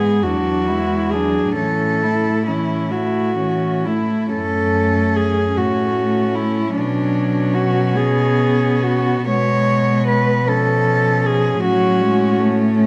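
A rubato pulse in 6/8 at 39-53 BPM, counted in dotted quarters, carries this serene, lyrical classical piece for cello ensemble, cut from a longer work, as it moves from A major into F# minor at 4.3 s: an up-front bowed cello carries the melody from D4 to C#5 with light vibrato and an airy sul tasto tone until 12.4 s, a second cello shapes a soft-attack second line beneath it, a third plays an intimate, close accompaniment, and a fourth holds a pure, floating, distant bass from E2 to B2, all four bowed in a wet recital hall reverb.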